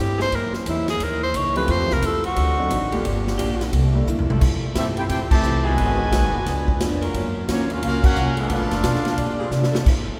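Bathed in a long cathedral reverb, this brassy big band swing excerpt at 176 BPM opens with a breathy, whispered tenor saxophone solo over a woody pizzicato upright bass, an up-front drum kit with a punchy kick, a boxy picked acoustic guitar with finger squeak and a very quiet saxophone section holding sustained chords. A warm grand piano joins in the background at about 1.6 seconds, before clear trumpet and tight trombone sections take up the melody and second line from about 4.7 seconds, with band accents at 5.3 and 8.0 seconds.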